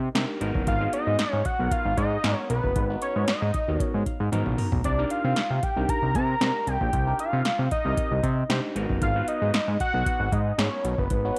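A straight 4/4 groove at 115 BPM from an electro analog drum machine, with deep kick, punchy snare, metallic hats and toms that sound tape-warm and re-recorded in a large room, drives this slick, danceable early-eighties boogie funk piece, underpinned by a thick, detuned sawtooth bass with a filter sweep that enters a fraction ahead of the drums at the very start. An overdriven tine electric piano, barky and gritty through a combo amp with phaser, supplies the chords Abm9, Cm9 and back to Abm9, adding a fill at 3.8 seconds as the drums play a fill at 4.3 seconds. A fat, dark lead of detuned sawtooth and square wave with a sub octave, vibrato and slapback echo carries the melody up front from 0.7 seconds, all set in light reverb.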